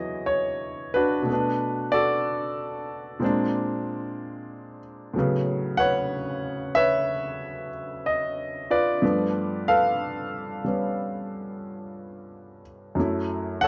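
Solo jazz piano with a playful, sophisticated mood, taken from a longer piece and moving at a relaxed 62 BPM in 4/4 with a loose, rubato swing. A warm, intimate grand piano sits up front across a range from E2 to F#5, its natural tone carrying audible action noise as the harmony drifts from E69 through Bm7, A#9, A69 and G9 before settling on F#m7 at 13.0 seconds. Moderate studio reverb gives the piano a modest sense of room.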